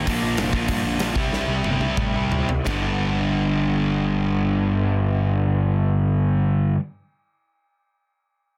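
Two overdriven, up-front electric guitars, one bright and cranked and the other sludgy, open this rowdy, energetic punk rock excerpt together with a growly fuzz bass, while a big-room acoustic kit with a punchy kick and bright cymbals slows through a drum fill over Bb and C chords before dropping out at 2.8 seconds, leaving the guitars and bass to carry on over a G chord at a straight 4/4 pace of 167-196 BPM in a dense, heavily limited mix with a small-room reverb.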